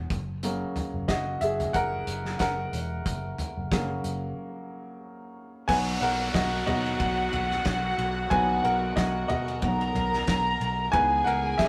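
Uplifting and warm, this piano-driven pop excerpt at 91 BPM in B major sets a clear, woody upright piano up front over a dark, round, foam-muted picked electric bass and a loose acoustic drum kit with a punchy kick, fat snare and rolled-off cymbals, until at 5.7 seconds a reedy, gut-string violin section with light vibrato and a background electronic downlifter join in, heard through a rough rehearsal-room recording with a wet small-room reverb.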